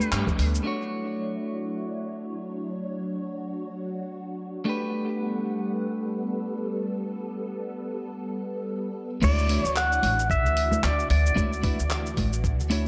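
Swung sixteenths at 112 BPM in 4/4 carry this warm, smooth sunset chillout fragment in D major, where a picked, compressed clean electric guitar and a silky, phased string machine under a filter sweep hold Dmaj9 and Gmaj9 chords after a brief band accent at 0.1 seconds, until at 9.2 seconds a woody pizzicato upright bass, a gritty, thumpy electronic kick, a dusty sampler-style kit with cabasa, handclaps, hi-hat and crash, and bright, dry congas enter together with a twangy, fingerpicked pedal steel melody, with tape echo on the steel and guitar and spring reverb across an echo-heavy mix.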